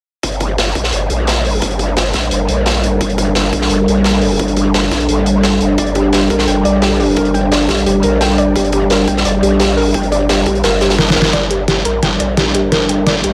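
Aggressive and futuristic, this dark technical drum and bass cut runs at 173 BPM in 4/4 with a straight feel, sitting in G minor on a G minor chord. A growling, wobbling growl bass starts at 0.2 s, saturated and bright with a formant filter, overdrive, chorus and sidechain pumping, pushed up front. Alongside it, a crunchy breakbeat kit brings a gritty, saturated snare and hi-hats with a rolled-off top, while a punchy, layered electronic kick sits in the background until it drops out at 10.6 s. A deep, moody analog pad of detuned sawtooth and triangle tones with a sub octave holds sustained chords, pumping under the sidechain, and from 5.8 s a soft, round pluck adds dark arpeggios coloured by cassette tape and dub echo. A drum fill at 11.0 s ushers in an up-front dubstep kit with a deep snare, launching a build-up to the end of the excerpt, all within a lush hall reverb.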